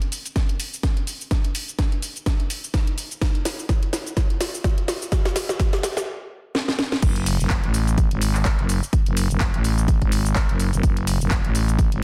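Bass house with a gritty, swaggering, swung feel, where an overdriven house kit with a cracking snare, handclaps, hi-hat, shaker and crash builds with drum fills over a punchy, up-front electronic kick, hits a stop at 6.1 seconds with a further fill from 6.5 seconds, then drops at 7.0 seconds as a thick, growling FM bass with tube saturation and sidechain pumping arrives in a dense, heavily limited, dry mix.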